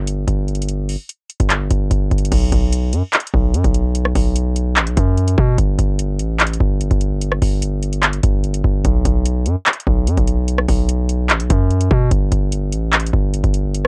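Recorded at home on cassette with little reverb, this hard-hitting, melancholic trap excerpt moves at 147 BPM in a half-time 4/4 feel. A heavy, saturated 808-style bass with a sine core, a noise layer and a fast, decaying attack sits up front from the very start, distorted and aggressive. At 0.1 seconds a booming, dry analog drum machine joins with a deep kick, metallic hi-hats, handclaps, rim clicks and crash cymbal, all carrying a tape warmth before the piece shifts into a new section at 2.3 seconds.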